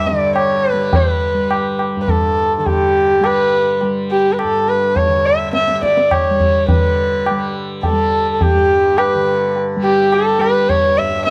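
A dry, close studio recording in a 1970s style, touched with light reverb, captures this meditative, serene fragment of Hindustani classical music, cut from a longer piece. Set in raga Yaman on G at 104 BPM in a straight 5/4, it places a single bowed sarangi up front, its intimate, warm tone carrying the melody between G4 and E5 with light vibrato, soft attacks, gliding portamento and the halo of sympathetic strings. Beneath it, a softly plucked tanpura holds a buzzing, shimmering drone from G2 to G3, sitting lowest in the balance. A low-tuned, ringing tabla joins at 0.1 s, its acoustic sound carrying a small-room quality. Around 6.7 s the music moves into a new section, which runs to the close at 11.3 s.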